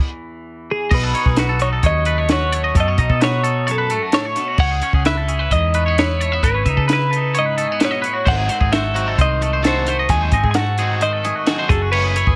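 This math rock and midwest emo excerpt feels playful and intricate, moving in a straight 4/4 through rich extended chords: E, B9, C#m9, G#7b9 and F#m9. A clean, twangy electric guitar opens alone with accompaniment, and at 0.7 seconds a compressed twelve-string electric guitar carries the melody, shimmering through harmonic tremolo and digital delay. By 0.9 seconds a second picked guitar weaves bright arpeggios, while a round, punchy hollow-body short-scale bass and a compact cocktail drum kit join up front. The kit has a dark, rolled-off top, a high-tuned snare and a punchy kick, with crash cymbal and hi-hat adding detail. From 8.3 seconds a biting, overdriven, double-tracked guitar riff sits in the background, bathed in spring reverb, while a light reverb gives the whole band a gentle sense of space.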